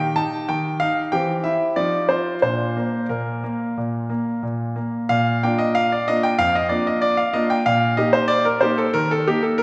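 A classical-period piano sonatina in Bb major, elegant and cheerful, moves at 88-95 BPM in 4/4 with a rubato feel across this brief 9.6-second excerpt from a longer piece. A clear, natural grand piano plays alone and sits up front, spanning F2 to A5 as its harmony passes from Eb through C/E and F5 to Bb, then settles on Eb/Bb near 7.7 seconds. The sound carries the lingering wet bloom of a scoring stage, with a 2.1-second reverb tail, and a second section begins at 5.1 seconds.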